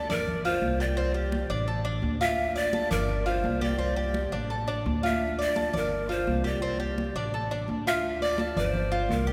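Danceable and warm, this short cut from a longer Cuban son and guajira piece moves at a brisk 170 BPM in a straight 4/4, set in D minor. Breathy large cane pan pipes carry the melody, close-miked with a crisp, chiffy attack and expressive vibrato. Beneath them, an up-front Cuban tres picks bright, metallic arpeggios on its double strings, some octave-doubled. A woody, dark pizzicato upright bass with steel strings sits forward in the mix, and bright, high-tuned congas with a thin skin join at 0.1 seconds. The harmony circles through G5, Csus2, Asus4 and Dm before closing on Gm7, all bathed in a lush cathedral reverb with a 4.1-second decay that gives the sound a church or concert-hall spaciousness.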